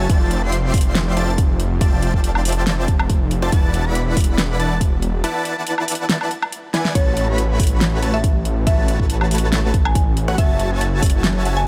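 A half-time 4/4 pulse at 140 BPM drives this euphoric, lush future bass excerpt, where a punchy kick and a pop kit of fat snare, metallic hats and woodblock anchor a huge compressed supersaw riff, a thick detuned saw bass up front, and an airy, dreamy arpeggiated lead in the background, all over chords moving from Fmaj13 through E9sus4 and A6 to F#m9, with a drum fill at 6.7 seconds and a woody, mellow mallet-like pluck melody entering at 7.0 seconds, sidechain pumping on the synths and a digital ambience around them.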